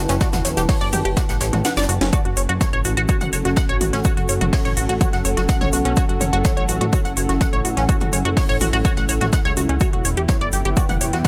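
A dark, driving melodic techno excerpt at 125 BPM in F# phrygian, where a punchy, overdriven electronic kick sits up front beside a plucky, ring-modulated analog bass pumping under sidechain, while an overdriven house kit with cracking snare and metallic hats, a faint airy brush kit, a tight detuned arpeggio synth soaked in chorus, phaser, cassette tape and digital delay, a moody full-bodied analog pad, a warbling nostalgic tape-like pad and a very quiet, tense string-like drone fill out the Em to F#m harmony, with the kick dropping out for a drum fill from 1.6 to 2.1 seconds over a faint mains hum.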